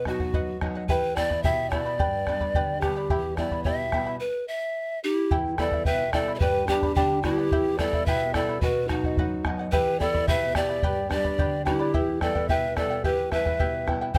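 Andean folk in E minor at 109 BPM, melancholic and wistful, with a reedy, breathy pan flute carrying the melody up front with vibrato and soft chiff, a shimmering fingerpicked charango of doubled strings and a bright, fresh-stringed classical nylon guitar accompanying, a round bombo entering at 0.1 seconds, and a second, brighter and unsteady pan flute joining at 5.0 seconds over a close, detailed booth sound in this short excerpt.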